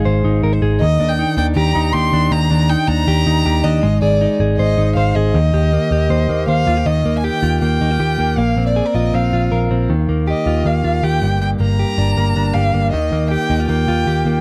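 A dry, close 1970s-style studio sound frames this breezy, nostalgic jangly indie pop passage in Eb major at 158 BPM, cut from a longer piece. A clean, compressed electric guitar recorded direct plays picked arpeggios from the start, joined at 0.1 seconds by a dark, round, foam-muted picked bass. At 0.8 seconds a single bowed violin enters with the melody, its soft attack, vibrato and expressive portamento carried on a tape echo over chords moving from Ebmaj7 and Eb6 to Ebadd9, Bbsus2 and Gm.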